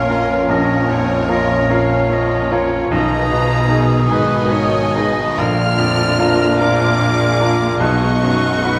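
A wet scoring-stage reverb surrounds this short, tragic and passionate fragment of a romantic movement for piano and orchestra, moving slowly in a rubato 12/8 at 49 dotted-quarter beats per minute from B-flat minor harmony toward B-flat and B major chords. Up front, an intimate baby grand piano carries the melody with long sustain and audible action noise, while a lush, vibrato-rich violin section sings above it and a second violin line, a clear clarinet and an airy, hollow flute weave secondary lines. Distant violas and a very quiet bassoon fill in the accompaniment, a faint French horn section holds sustained chords, and dark, woody cellos and double basses anchor the bass.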